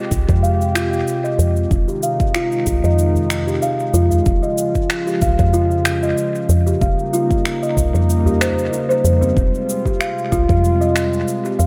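Organic downtempo with a mystical, meditative air: a smooth, detuned sawtooth pad with chorus holds sustained chords over a round, dark FM bass, both with sidechain pumping, as a deep, tape-toned electronic kick drum and electronic shaker and finger snaps through analog delay carry the swung groove, a buzzing, hollow kalimba plays up-front arpeggios under a filter sweep and delay, and a very quiet, close udu joins at 1.4 seconds in an echo-heavy mix with light reverb.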